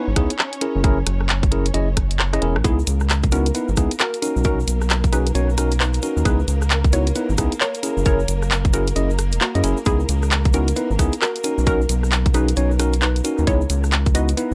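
A swung two-step shuffle drives this soulful, bouncy UK garage excerpt: a tight, tape-warm electronic kick and an up-front garage kit of handclaps, hi-hat and rim click sit over a dark, rubbery square bass, while a bell-like tine electric piano stabs chords through 12-bit sampler grit and dub echo above lush, pumping sustained chords from a violin section, and after the kick drops out for a drum fill at 2.2 seconds, a hollow, chorused square pluck melody with dub echo and a grainy cabasa join at 2.6 seconds.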